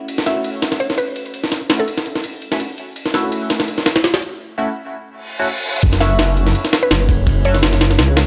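Drum and bass with a jungle edge, frenetic and dark, this excerpt rides a gritty, pitched-up sampler drum kit with a thumpy kick, high-tuned snare and ride cymbal, all sitting up front with a large-room sound. A very quiet, warbling tape-like pad holds a sustained F#m7 chord while a nasal, band-passed chord stab with phaser, chorus and dub echo recurs, and a woody, mallet-like synth pluck with dub echo plays a melody in the background from 0.3 seconds. After a break at 4.4 seconds and an electronic reverse cymbal, the drop at 5.8 seconds brings in a thick, menacing detuned saw bass, saturated and up front.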